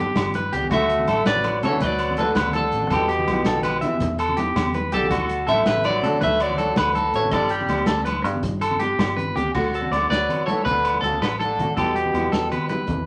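Tape-saturated and bathed in wet studio reverb, this sunny, carefree highlife excerpt rolls along at 109 BPM in 12/8 in D major, with a twangy, slightly broken-up electric guitar melody up front over a scooped, picked electric guitar playing arpeggios, a fingerpicked nylon-string guitar with finger squeak, a foam-muted fingered electric bass, a vintage drum kit with dark cymbals and a punchy kick that plays a fill from 8.8 to 9.5 seconds, soft-handed congas, ringing agogo bells, and a raspy, growling tenor saxophone carrying a second line in the background.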